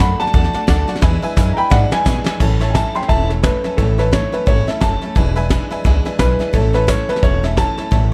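Opening on a dark, slightly detuned upright piano carrying the melody over a bright, full-bodied picked steel-string acoustic guitar, a jangly tack piano, a thumpy pizzicato upright bass and a soft brush drum kit with dark cymbals, this retro, rollicking rockabilly excerpt swings at 174 BPM in A major, with a drum fill from 1.0 to 2.4 seconds leading into a new section in a small room ambience.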